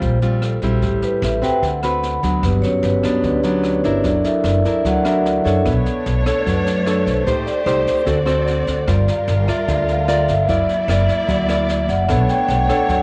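Opening on a rootless Eb69 chord, this romantic, sophisticated bossa nova excerpt at 149 BPM features a ringing, metallic vibraphone solo with the motor off, over an up-front fingerpicked nylon-string guitar, a woody, growly pizzicato upright bass and a brushed drum kit with a high-tuned snare and boomy kick, while a lush, bowed symphonic string section adds dark sustained chords from 5.7 seconds, all in light studio reverb.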